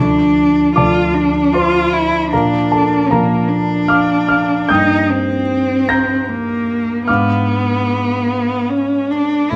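Classical romantic music for cello and grand piano, solemn and elegiac, unfolds at 75 BPM in a rubato 3/4, with a single bowed cello singing the melody up front in a warm, expressive voice rich with vibrato and portamento over a dark, mellow concert grand whose deep bass anchors the accompaniment through Dm, Bb, Eb/G and G#dim7, all set in a wet recital hall reverb with vinyl crackle in this 9.6-second passage cut from a longer piece.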